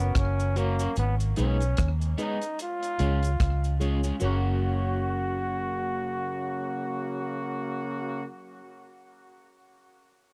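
A cloth-damped, thuddy drum kit with a tight kick, hi-hat and rim click sets a laid-back, swung 74 BPM roots reggae groove in F# major, anchored by a dark, round, foam-muted fingered bass up front and a compressed tube-shaker cabasa in the background, while a brilliant trombone with light vibrato and dub echo carries the uplifting melody over a distant, roomy horn section, reedy electric piano stabs with fast tremolo, and a slightly broken-up, scooped electric guitar with spring reverb entering at 0.6 s, all captured in a dry, close 1970s-style sound, with the drums dropping out at 4.2 s in this short cut from a longer piece.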